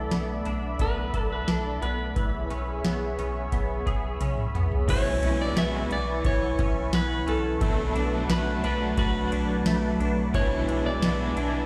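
Heard through a stone room's reverb, as if played on a big sound system in a bare space, this short dream pop cut from a longer piece sounds haunting and hazy, moving at a straight 88 BPM in 4/4 and tuned to A4 = 436 Hz. A clean, dark electric guitar carries the melody with digital delay, while a lush, detuned sawtooth pad sustains thick, warbling chords under chorus, and a semi-hollow electric guitar picks compressed arpeggios through ensemble chorus and delay. A round sine sub bass holds a low B up front, and a booming analog drum machine, overdriven with a deep kick, crisp snare and metallic hats, drives the groove from 0.1 seconds. After a drum fill at 4.2 seconds, a cranked stack guitar enters at 4.9 seconds with bright, overdriven accompaniment colored by tremolo and analog chorus. The harmony drifts from E7sus4/B through C#m7/B and Bm7 to E7/B, all over that steady B in the bass.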